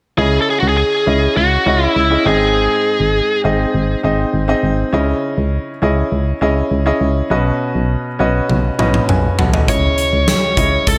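A straight 4/4 pulse at 101 BPM drives this moody, dramatic slice of 1980s-style pop in C# minor, cut from a longer piece. A concert grand piano with a deep, smooth, vintage low end carries the accompaniment throughout, while a round, punchy FM bass with a fast attack and decaying mellow tone holds down the bottom. An overdriven, picked electric lead guitar states a biting melody through digital delay, drops out at 3.4 seconds, and returns at 9.7 seconds. The harmony moves from C#madd9 to G#, back to C#madd9, then to Badd9 before settling on C#madd9 again. A huge arena drum kit with a punchy kick, medium-tuned snare, hi-hat and toms crashes in at 8.5 seconds with a fill drenched in gated reverb. The bright digital production sits in a moderate plate reverb, with every part placed up front.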